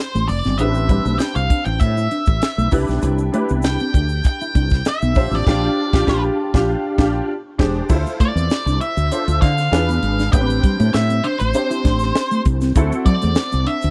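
A swung sixteenth-note groove from a tight funk drum kit with bright cymbals and a high-tuned snare drives this glossy, breezy slice of polished 1980s jazz-funk pop, where a growly, woody fretless bass sits up front beside a present grand piano with ensemble chorus, a dark, clean electric guitar riff with analog chorus and a grainy tube shaker stay in the background, and an octave-fuzz lead guitar carries the melody over rich jazz chords, with a band accent from 5.5 to 7.9 seconds before a new section begins.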